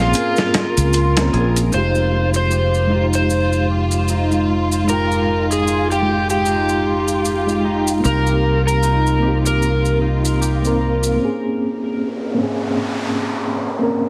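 Melancholic and brooding, this trip hop excerpt moves at 76 BPM in F minor with a swung feel. An up-front overdriven slide guitar carries the melody over a reedy electric piano shimmering with fast tremolo and tape echo, smooth distant violins, a ringing fingerpicked harp in the background, and a punchy fingered bass. A gritty sampler-style kit of hi-hat and snare drops out at 1.7 s, soft maracas continue until the break at 11.2 s, and an electronic noise sweep enters at 11.5 s, all under a heavily compressed, radio-like sound with light reverb.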